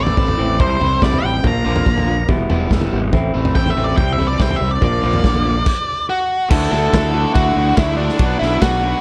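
An up-front octave-fuzz lead guitar, dark and distorted with a slapback echo, plays a solo melody through the first section of this wistful yet upbeat indie rock excerpt in a straight 4/4. Beneath it, an electric guitar through a small old amp plays a slightly broken-up, lo-fi, compressed riff. A bright, overdriven garage guitar adds its own riff in the background, coloured by lush chorus and slapback echo. A fuzzy, punchy fingered bass and a gritty, saturated garage drum kit with a medium-tuned snare and rolled-off top drive the band, while a very quiet tonewheel organ holds clean sustained chords with key click and a slow rotary speaker until 5.7 seconds. After a stop that lasts until 6.5 seconds, the music moves into a new section on fresh chords, all captured in a dry, close, 1970s-style studio sound with little reverb.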